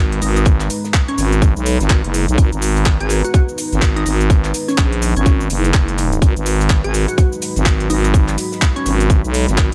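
Gritty and aggressive, this excerpt of bass house moves at 125 BPM in 4/4 with a 60% swing on the sixteenths, sitting on a single G# minor chord in G# minor. A growling FM bass, thick and up front, holds the low end from the very start, pumping against the sidechain. The electronic kick drum arrives at 0.5 seconds, tight, tape-warm and layered, re-recorded in a large room and placed prominently in the mix. A garage kit adds crisp hats, cabasa and handclaps, joined by a very quiet, cloth-damped acoustic kit with a fat, rolled-off snare and hi-hat. A glassy wavetable pluck carries the melody between C#4 and G#4 with a crystalline, nasal edge, colored by chorus, delay and a filter sweep. Underneath, a very quiet, moody analog pad sustains detuned sawtooth chords, while a deep ambient pad, mellow with chorus, built-in reverb and sidechain pumping, hovers in the background of an otherwise fairly dry mix.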